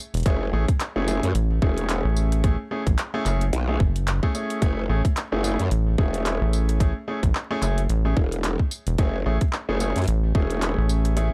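Gritty and playful, this glitch hop excerpt struts at 110 BPM in F# minor with a swung sixteenth feel, resting on a single F#m9 chord. A rubbery, hollow square bass opens at 0.1 s alongside an electronic kit of handclaps, bright hats, rim click and tambourine. At 0.3 s an overdriven, tight kick joins, along with a growling, wobbling bass carrying chorus and formant filtering, and brilliant concert grand piano stabs with sidechain pumping and digital delay. The dark production is dry, dusted with vinyl crackle, and the kick drops away at 10.5 s.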